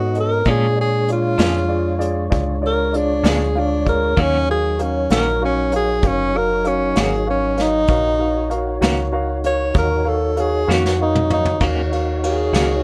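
Soulful and smoky, this slow blues excerpt in 12/8 at 65 BPM sits in Eb minor, with a breathy, dark tenor saxophone carrying a subtoned solo melody up front over a woody upright piano, a flute-like tonewheel organ with chorus vibrato and slow rotary speaker, and a clean electric guitar with tremolo entering at 0.5 seconds. A metallic, digital FM bass anchors the low end while a vintage brush kit with dark cymbals and a rolled-off top plays a fill from 10.7 to 11.6 seconds. The harmony moves from Bb7#9 to Ebm7, all wrapped in light reverb.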